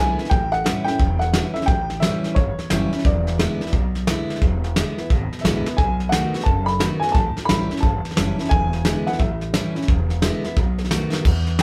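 Rowdy and upbeat, this short rockabilly excerpt swings at 176 BPM in E mixolydian, with a band playing live together in one room under light reverb. An upright piano carries the melody high in its range, its tone intimate and natural with audible action noise, and it drops out at 9.8 seconds while the others carry on. Underneath, a bright picked steel-string acoustic guitar with fresh strings fills in the accompaniment, and a pizzicato upright bass on gut strings gives a thumpy, woody low end. Soft brushes on a kit recorded in a small room sit up front, with a tight kick, medium-tuned snare, hi-hat and crash, and drum fills land at 5.6 and 11.1 seconds. The harmony cycles through dominant sevenths on A, E and B, giving the passage a loose, rolling bar-room energy.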